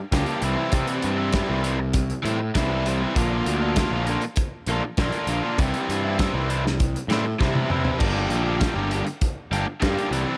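Moody and bittersweet, this short indie rock excerpt moves at 99 BPM in a straight 4/4 over C, Bb, C and Gm, with a double-tracked, overdriven electric guitar riff and a bright, growly fuzz bass up front beside a loose acoustic drum kit that plays a fill at 7.4 seconds, its dark cymbals, tight kick and medium-tuned snare set in a small room ambience.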